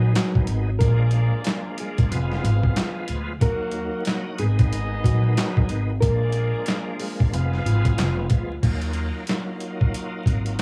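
Tough and dark, this boom-bap hip-hop excerpt at 92 BPM swings its 16ths in Eb harmonic minor, with a gritty, pitched-down sampler kit of thumpy kick, medium-tuned snare, hi-hat, handclaps and crash sitting up front beside a woody pizzicato upright bass, while a shouting tonewheel organ with key click, chorus vibrato and slow rotary speaker carries the chords, a thumb-plucked nylon-string guitar with finger squeak sings the warm melody through digital delay, and a bright trumpet section adds vibrato-laced stabs, both dropping out at 8.3 s before the harmony settles on Ebmadd9 at 8.6 s, all wrapped in vinyl crackle and small-room ambience.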